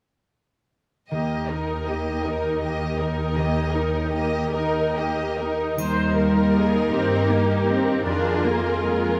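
Lyrical and tender, this slow romantic passage for symphony orchestra unfolds in 6/8 with a flexible rubato feel, cut from a longer piece. A violin section carries the expressive melody with vibrato and a soft attack, while a second violin line sits close beneath it. A rich viola section adds smooth, even accompaniment from further back, and the cello section supplies a warm, lush bass. A concert harp plays ringing, fingerpicked arpeggios in the background, and at 5.8 seconds a double bass section joins the low end while a dark, dry triangle sounds briefly until 7.3 seconds. The whole performance sits in a vast, echoing cathedral space whose long reverb lends the strings a glowing halo.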